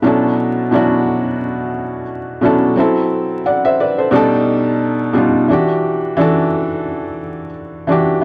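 A felt-muted upright piano plays alone through this hazy, nostalgic hip hop fragment at 88 BPM in B minor, its soft, intimate tone carrying audible action noise and short sustain, dulled by cassette tape and a low-pass filter amid vinyl crackle and light small-room reverb, with a gently swung 16th feel as it moves through Bm11, F#m7b5, B7alt and Em9 over 8.2 seconds.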